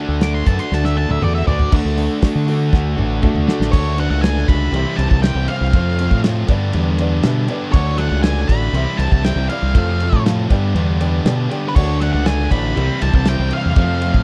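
Classic rock with a swaggering, driving straight feel, cut from a longer piece, where a dark octave-fuzz lead guitar solos from the start over a growling, punchy fingered bass up front and a cloth-damped, thuddy drum kit with dark cymbals and fills, while a bright overdriven guitar riff, a quieter double-tracked distorted guitar that drops out at 3.7 seconds and returns at 11.7 seconds, a hollow-toned semi-hollow guitar with spring reverb, a woody upright piano and a very quiet full-bodied steel-string acoustic guitar with finger squeak fill out a dry, close 1970s-style small-room sound as the chords cycle through D, C, F and G.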